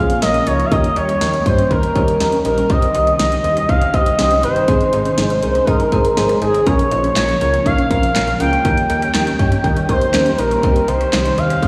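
Synth-pop with a wistful yet bright mood, this short clip is led up front by a smooth, expressive portamento lead with vibrato, chorus and tape echo, over soft, round electric-piano-like synth keys shimmering with tremolo and slapback echo. A vintage string machine with cellos holds full, sustained chords in the background, while a juicy, squelchy blip pluck traces phased arpeggios and a snappy, metallic FM slap bass anchors the low end. A punchy, layered house drum kit with handclaps, hi-hat, kick and snare joins at 0.1 seconds, and a lush hall reverb gives the whole mix a big arena sound.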